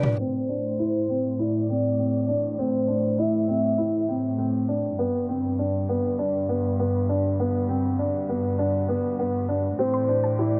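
Electronica in A dorian at 100 BPM, this intimate, hypnotic excerpt centres on a felt-muted upright piano riff, dark and vintage with delay, over a clear, floating cello section bass and sustained sul tasto chords from a string quartet fading in from 0.2 seconds, while a velvety, detuned synth lead with chorus and portamento sings its melody until 4.7 seconds and returns at 9.8 seconds alongside a very quiet, round pluck arpeggio, all moving from Am7 to G and back within light digital reverb and a low-pass filter.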